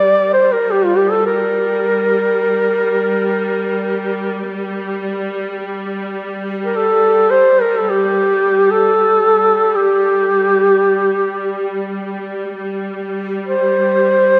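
Solemn and longing, this Caucasian lament unfolds in free time in G minor, cut from a longer piece. A mellow duduk carries the melody up front from start to finish, singing between F4 and D5 with vibrato, scooped notes and a punchy, smooth-topped folk voice. Beneath it, a rich studio string section holds a bowed drone on G3, its ensemble sound even and smooth with its own vibrato, sitting well below the solo. Both parts play throughout the 14.4 seconds, and the melodic material of the opening returns at 12.6 seconds. A wet church reverb with a three-second tail surrounds the performance, lending it a spacious, devotional air.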